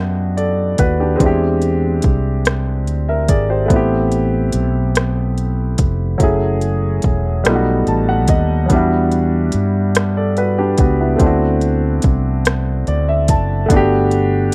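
Grand piano and fretless electric bass open together in this tender slow R&B excerpt in a six-eight feel, with the drum kit joining at 0.4 seconds. The piano sits up front with a present, polished tone and long sustain, voicing lush extended chords such as Em9, Am9 and Gmaj9, and it adds short fills at 7.5 and 12.4 seconds. Beneath it, the amped fretless bass carries the low end with a warm presence. The electronic, produced kit keeps things gentle with hi-hat, rim click and a soft kick, its smooth hats carrying a tape-like glow and a sense of having been re-recorded in a large room. The overall sound is dry and intimate, like a close 1970s studio session.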